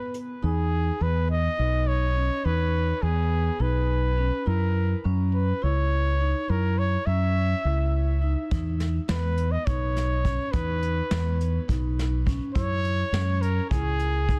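A dark, up-front trumpet with vibrato and a soft attack carries the melody in a classical style, its line trailed by delay, over round, punchy fingered electric bass and mellow, ringing soft-mallet vibraphone arpeggios with the motor off. This driving, intricate progressive band piece moves in 7/8 at 208 BPM in eighths with a straight feel, with harmony shifting from Emaj7 to F#7 and then to E5 and F#5. A smooth brush drum kit with a rolled-off top and softly clipped snare taps briefly at 0.1 seconds and returns at 8.5 seconds, all set in a small room with a dense, heavily limited modern master.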